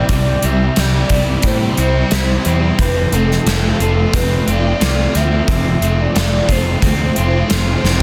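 Hazy and dreamy, this 89 BPM shoegaze-tinged dream pop rock excerpt pairs a velvety, chorused synth lead melody over a faint ethereal pad with twangy, slightly broken-up guitar arpeggios, two overdriven guitar riffs set back in the mix (one with reverse reverb, the semi-hollow one with analog chorus), a round fuzz bass and a punchy gated 80s drum kit up front, moving from C to F at 2.8 seconds in a small room before a drum fill at 7.8 seconds.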